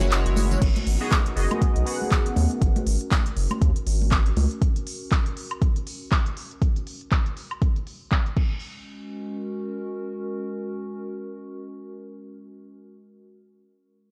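A swung pulse sets up this deep house passage, with a deep, up-front electronic kick arriving at 0.6 s after a brief break. The kit adds a crash, handclaps, smooth filtered hi-hats, tambourine and woodblock in a reverberant room, while small-room acoustic congas sit in the background and pump with the sidechain. A round, dark analog bass holds the low end up front alongside a glossy, retro chorused polysynth playing stabs through phaser and tape echo, its filter swept early on. A silky, very quiet string machine lays down sustained chords beneath, and a warbling, nostalgic lo-fi pad with detuned tone drifts through the whole cut. The bass and congas drop out at 4.5 s, the drums fall away at 8.5 s, and the pad carries the deep, warm mood alone over sus-flavoured ninth harmony, all captured with a dry, gritty hardware sound and transformer saturation.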